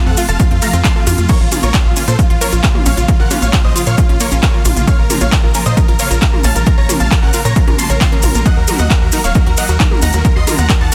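A huge, euphoric supersaw lead carries the melody over a clear grand piano line and biting studio strings, all pumping with the sidechain, as a lush, warbling unison pluck arpeggio, a tight sawtooth sequencer bass, crisp overdriven big-room drums with maracas and a punchy, up-front kick drive this soaring uplifting trance passage from F through Bb minor to Eb minor at 8.5 seconds, all within a dense, heavily limited master.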